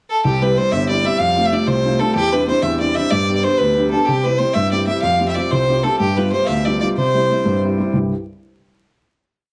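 A clear, earthy fiddle opens with a pickup bar at 0.1 seconds, carrying a lively, cheerful Celtic folk jig in C major at 125 BPM in 6/8, its up-front, lightly vibratoed bowed melody built from motif-based period phrases over a dark, mellow baby grand piano whose intimate oompah bass notes and chord figures carry audible action noise, while a reedy, hollow accordion holds a plate-reverbed drone in the background, all set in a moderate studio room with vinyl crackle before the piece settles on a final chord at 7.9 seconds.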